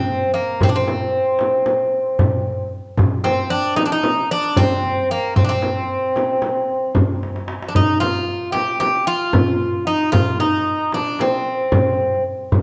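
A dark production, bathed in the wet reverb of a recital hall, frames this melancholic, hypnotic Turkish makam ensemble excerpt in 9/8 at 227 BPM counted in eighths. An up-front Greek bouzouki, picked on metallic double strings with some octave-doubled courses, carries the melody from the opening. From 0.6 seconds a deep, clay-shelled darbuka played with hard hands sounds distant in a large room, while a small, bright frame drum struck with soft hands sits in a smaller space, and a brief drum fill arrives at 7.2 seconds.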